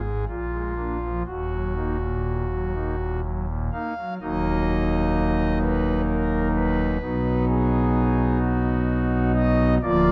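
Unevenly paced in a rubato 3/4 at about 63 BPM, this solemn, dark classical chorale for solo pipe organ in Eb minor places thick, romantically voiced foundation stops up front, spanning D1 to F5 and moving from Bb7 to Ebm at 1.3 seconds and on to B at 7.0 seconds before this fragment of a longer piece breaks off at 10.1 seconds, all captured by close, detailed microphones within a moderate stone-room reverb.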